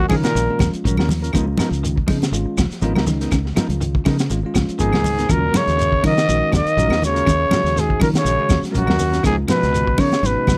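A crunchy breakbeat drum kit, with a punchy kick and a high-tuned snare, sets a funky, hypnotic afrobeat groove in 4/4 with a slight sixteenth-note swing. From 0.1 seconds it is joined by damped congas, woody claves and a grainy shekere. A round, foam-muted fingered electric bass anchors the pattern beneath a bell-like tine electric piano, a dark, clean guitar playing stabs through spring reverb, and a very quiet, twangy guitar picking arpeggios at the edge of break-up, over chords that move between Ebm9 and Db13. A raspy, growling trumpet leads up front, while a forceful bass trombone with scooped notes plays a second line in the background; both horns sound briefly at the start, drop out at 0.7 seconds and return at 4.8 seconds. The sound is dry and close, in the manner of a 1970s studio recording, and the passage is cut from a longer piece.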